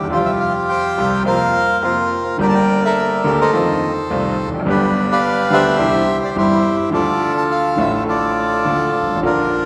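Elegant and nostalgic, this short tango passage is cut from a longer piece and unfolds with a flexible, rubato feel in 4/4. A reedy, dark bandoneon carries the melody from the first moment to 9.7 seconds, its smooth tone sitting up front in the mid-to-upper register. Beside it, a brilliant grand piano supplies the accompaniment across a deep span from the low bass into the middle range, its natural, bright voice equally close to the listener. The harmony drifts through open suspended colours such as Fsus2 and Bbsus2/F, passes through Gmadd9 and F7, then settles from G and C onto Dm. A lush concert hall reverb with a 1.9-second decay wraps the duo in a spacious, church-like ambience.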